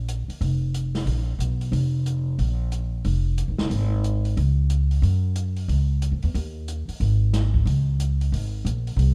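Jazz piano trio fragment with a smoky, late-night mood, cut from a longer piece and moving at a brisk swing in 4/4. Upright bass, plucked on gut strings, sits up front with a woody, thumpy tone that carries the low end from the opening moment. The open jazz drum kit follows at 0.1 seconds, its hi-hat, snare and boomy kick sounding dark and smooth in a small room, with a medium-tuned snare and a rolled-off top, set well beneath the bass. The recording is dry, with little reverb, and has the rough balance of a home demo. A brief opening passage gives way at 2.4 seconds to a new section that runs until both parts stop at 9.1 seconds.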